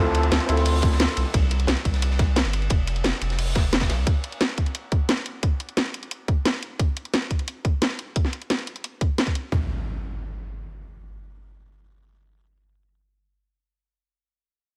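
A straight 176 BPM liquid drum and bass groove in 4/4 is driven by two up-front garage drum kits, one with a tight kick and toms and the other with a cracking snare and bright hats, layered with a dark, gritty breakbeat kit of hi-hat, ride and snare, while a thick saturated sub bass, a mellow felt-muted upright piano with dub echo, an airy breathy pad with chorus and sidechain pumping, and a downlifter and impact that return at 9.5 s open this dreamy, soulful excerpt over Dm9 and Cm9 chords before the garage drums stop around 9.6 s.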